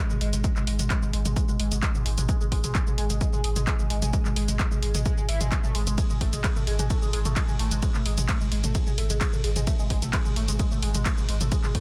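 A straight 4/4 pulse at 130 BPM drives this hypnotic, relentless slice of peak-time techno, cut from a longer piece and tuned slightly sharp to A4 = 441 Hz. The overdriven synth lead opens at 0.0 seconds with a gritty, screaming riff between G#3 and E4, its saturated sawtooth-and-square tone colored by phaser, analog chorus, delay, ring modulation, vibrato and sidechain pumping. A round sine sub bass holds G#1 from 0.1 seconds, warmed by tube saturation and a low-pass filter and pumping against the beat. At the same moment, a punchy analog drum machine sits up front with handclaps, hi-hat, ride cymbal, shaker and toms, while a dry electronic kick, the loudest part, lands at 0.4 seconds. The harmony rests on a rootless F#madd9 over G#, and the dense, heavily limited master keeps the space close, with little reverb.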